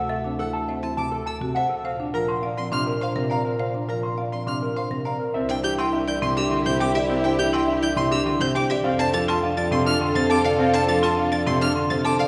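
A straight 3/4 pulse at 103 BPM drives this meditative yet urgent piece of minimalist classical pattern music, which settles into C major at 5.3 s. A clean, fingered electric guitar carries the melody over a smooth-topped bass clarinet bass line and a dark, boxy grand piano accompaniment, while a bright, woody marimba struck with hard mallets and an expressive violin with vibrato and portamento play arpeggios. At 5.3 s a warm French horn enters in the background with a second line, joined at 5.4 s by a very quiet, lush studio string section holding sustained chords, heard in a reverberant church acoustic.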